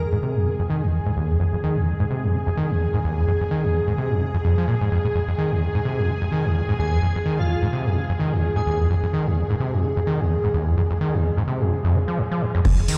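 A swung 128 BPM acid house groove in 4/4 and F minor sets a trippy, hypnotic mood, driven by a squelchy, distorted acid bass riff that runs from Eb2 to F3 under a filter sweep, sidechain pumping and tape echo, beneath lush, vintage string-machine chords treated with phaser and ensemble chorus. An airy, dreamy sine lead with detuned unison, vibrato and tape echo floats a brief melody between 6.8 and 8.8 seconds, and at 12.6 seconds a deep, tape-warm electronic kick arrives with a punchy analog drum machine of crash, hi-hat and rim click, all set in a lush hall reverb heard through a big system in a bare room, cut from a longer piece.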